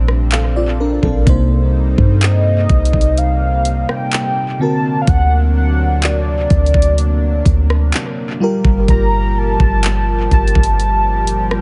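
Longing and sensual, this slow contemporary R&B excerpt moves at 63 BPM in a straight 4/4, set in C dorian. A velvety, detuned synth lead carries the melody with a gentle vibrato, colored by chorus, tremolo and analog delay, over a lush, dreamy FM electric piano with a soft pad layer that adds its own chorus and delay. Beneath them, a shimmering, retro pulse-width pad holds sustained chords, while a deep, boomy 808-style bass with a clean sine tone sits up front. The electronic drum kit enters at 0.1 seconds with a knocking kick, warm hats, handclaps and rim clicks. The chords drift from Bbmaj9 through Cm7 and D7b13 to Gm9, and the dry, echo-heavy mix keeps a rolled-off top end.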